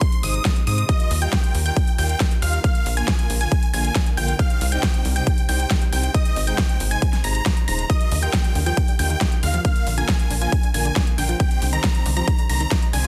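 Uplifting trance at 137 BPM in Eb major, euphoric and driving, cut from a longer piece and cycling through Ab, Ebadd9, Bb and Cm. A huge, detuned supersaw lead carries the melody over a bright analog pluck line high above it, dark bowed strings with vibrato and 12-bit sampler grit, and a tight sawtooth sequencer bass, all breathing with sidechain pumping, while an overdriven punchy kick sits up front with a huge snare and metallic hats. At 7.9 seconds a detuned sequenced synth arpeggio joins in the background, and the dense, heavily limited mix stays dry.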